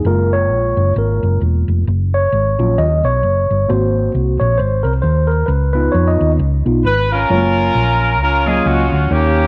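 Uptempo gospel with a swung, jubilant lift, this short cut from a longer piece opens with a mellow, phased tine electric piano taking a solo over a round, dark hollow-body electric bass, before a clear horn section with light vibrato and a vintage pop flavour enters with the melody at 6.9 seconds, the mix sitting in a moderate echo-chamber and small-room reverb.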